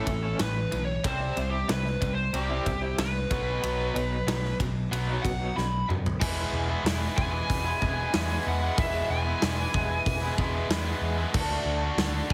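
A high-gain lead guitar with a dark, distorted edge carries the melody and solos over the opening 6.2 seconds, while a twangy, slightly broken-up guitar through a small old amp adds tremolo-laced arpeggios in the background until 5.8 seconds. This restless, bittersweet quiet-loud alternative rock excerpt moves at 93 BPM in a straight 4/4, with two bright picked guitars, one overdriven and one tight and distorted, driving riffs above a growly overdriven bass and a huge arena drum kit with a punchy kick. A drum fill leads into a new section at 6.2 seconds that settles into E mixolydian, and the whole piece sits in studio reverb with a heavily compressed radio sound.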